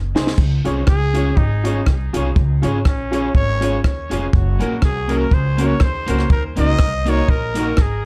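A raspy, growling trumpet takes the solo melody in this cheerful, joyful ska excerpt, entering at 0.9 s with light vibrato and a gritty pop-style bite, its line trailed by tape echo and plate reverb. The compact cocktail drum kit opens with a fill and then drives the 122 BPM 4/4 groove with lightly swung eighths. Its dry, punchy kick, high-tuned snare, rim clicks, hi-hat and dusky crash sit up front. A woody pizzicato upright bass on steel strings anchors the low end alongside the kit. A worn, slightly detuned upright piano adds clear stabs, and a picked electric guitar, slightly broken-up and touched with tape echo, fills out the accompaniment over chords moving from Db to Gb to Ebm in Db major. The production is dark and warm, with moderate studio reverb giving the band a snug room sound until the trumpet's last note at 8.1 s.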